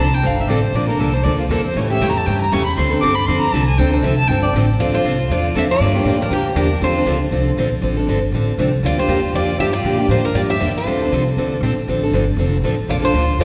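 A reverberant concert-hall sound, with a 2.0-second tail, surrounds this fiery, swinging stretch of jazz manouche in D minor, taken at a brisk 237 BPM and cut from a longer piece. A smooth, bowed violin with vibrato solos over the opening 4.8 seconds and then carries a second line, while a bright, full-bodied picked steel-string guitar plays the accompaniment up front beside a woody, thumpy pizzicato upright bass. At 4.8 seconds a second picked acoustic guitar with a concert-style tone enters up front with the melody, as the chords move among Dm7, Gm7 and Bbmaj7.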